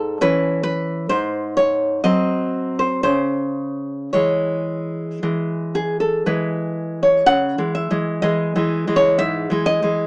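Heard through a small speaker with light reverb, this short cut from a longer romantic piece for solo classical guitar is tender and sunny, moving in a slow, rubato 4/4 at roughly 55-69 BPM in C# minor, tuned to A4 = 441 Hz. The fingerpicked nylon-string guitar sits up front with a full-bodied, deep acoustic tone, spanning G#2 to F#5 as the harmony moves from C#m/G# to G#7 and settles back on C#m at 3.0 seconds. A new section begins at 7.3 seconds and carries the guitar to the close at 10.1 seconds.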